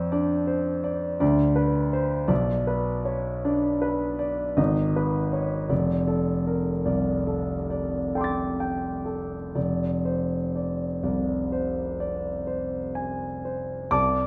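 A warm concert grand piano sits up front in this mysterious, hazy impressionist classical passage, its natural tone reaching from a deep bass at F1 up to A6 and tuned to A4 = 436 Hz. Played solo in a slow, rubato 3/4 that drifts between 39 and 56 BPM, it moves through shadowy harmonies such as Bm, Abm and F69 before settling on Fm6 at 9.6 seconds. A wet recital hall reverb, with a 1.5-second decay, surrounds this short excerpt from a longer piece.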